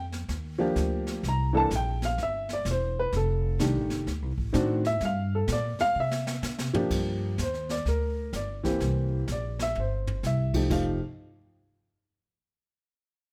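A boxy, short-sustained upright piano sits up front and carries the melody, taking a solo over the opening 6.9 seconds of this relaxed, sophisticated jazz piano trio clip, swinging at 127 BPM in 4/4 through changes such as Gm7, C7, F13 and D7b9. A woody, pizzicato upright bass with steel strings is also close and present, while a brushed drum kit with dark cymbals, a medium-tuned snare and a boomy kick sits further back in a studio room, adding fills at 6.0 and 9.3 seconds. Light reverb lends the trio a polished, intimate sound.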